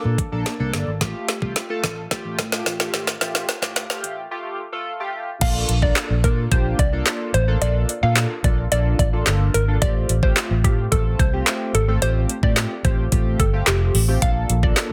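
A straight 4/4 groove at 109 BPM drives this euphoric, carefree dance-pop excerpt in Bb major, where an electronic R&B kit with a knocking kick, woody snare, metallic hi-hats, handclaps and crash plays a build-up fill, breaks at 4.3 s, then drops at 5.4 s. A dark, round, foam-muted electric bass and a glossy, retro chorused polysynth with phaser both pump with sidechain compression as the chords move between Bbmaj7 and Fadd9. From the drop, a hollow, bouncy, warbling square pluck carries the melody with chorus and digital delay, all set in light reverb within a dense, heavily limited modern master.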